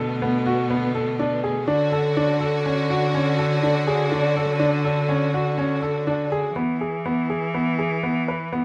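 Close, detailed microphones and light reverb give this short passage an intimate, clear sound. It is contemporary instrumental chamber music in an uneven 5/4 meter at 123 BPM, straight in feel and set in E mixolydian, with a restless yet hopeful mood. A warm, smooth grand piano with a vintage tone sits up front playing arpeggios. Just as close, a dark, veiled muted cello carries the bass line, played con sordino by a single bowed player with vibrato and a soft attack. Behind them, a rich studio string section holds even, bowed sustained chords with vibrato until 6.5 seconds, leaving piano and cello to carry on. The harmony moves from Bm7 to Dmaj7 and settles on E at 6.6 seconds as a new section begins, and the passage, cut from a longer piece, ends at 8.6 seconds.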